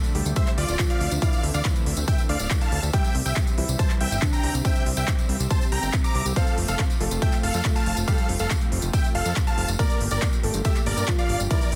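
A crisp big-room kit of handclaps and hi-hats, a jingly, dry tambourine and a plucky, detuned analog bass that pumps to the sidechain open this uplifting trance excerpt, and at 0.4 seconds a punchy, tape-toned electronic kick enters up front to drive it. At the same moment a huge, euphoric supersaw lead takes up the soaring, emotional melody with dub echo, while a brilliant grand piano with dub echo adds a second line in the background. A lush, thick unison pad with chorus sustains the Dm7, C, F and Gmadd9 chords, and a soft, felt-muted upright piano with delay plays a second line beneath, all in a dense, heavily limited mix with little reverb.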